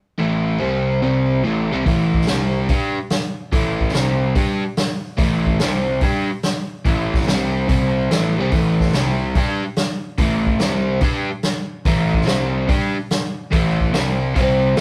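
This rough rehearsal-room recording has a warm saturation and a moderate studio reverb, giving this heavy, smoky blues rock and southern rock power-trio cut a loose, lived-in sound. A crunchy, bright, double-tracked overdriven guitar sits up front with a picked riff that moves between A5, C5 and A minor chords from the first moment. Beneath it, a fuzz-laden electric bass growls in the background, its overdriven tone picked low in the register. A vintage acoustic drum kit enters at 1.9 seconds, with a punchy kick, a medium-tuned snare and hi-hat heard up front in a natural studio room. The whole passage swings in a steady four, cut from a longer piece and ending at 14.8 seconds.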